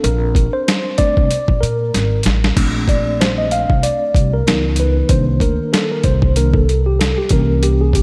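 Warm and relaxed, this short jazz-hop cut from a longer hip hop piece moves at 95 BPM in 4/4 with a gentle swing on the sixteenths, sitting in Bb major. A mellow, clean tine electric piano plays up front through its built-in speakers, taking a solo across the whole 8 seconds over chords that open on Bbmaj9 and later pass through Dbm7, Cm7 and C7b9. Beneath it, a woody, growly pizzicato upright bass with steel strings holds down the low end. The sampler-style boom bap kit is compressed, pitched down and overdriven into a gritty texture, with a thumpy kick, a medium-tuned snare, hi-hat and crash, and it drops a fill between 1.9 and 2.6 seconds before the second section begins. A lush hall reverb soaks the mix, giving the whole track a dreamy haze.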